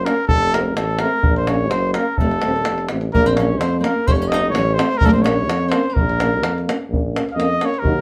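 A mellow trumpet with light vibrato and a smooth top leads this fiery, virtuosic Balkan brass band passage in a straight 2/4, over an up-front warm tuba bass, a tight davul, and a background bed of clear vintage euphonium and French horn, while a full-bodied fingerpicked nylon-string guitar adds a second line from 2.2 to 6.6 seconds before the trumpet takes a brief solo at 6.9 seconds, all captured live in a small, reverberant room.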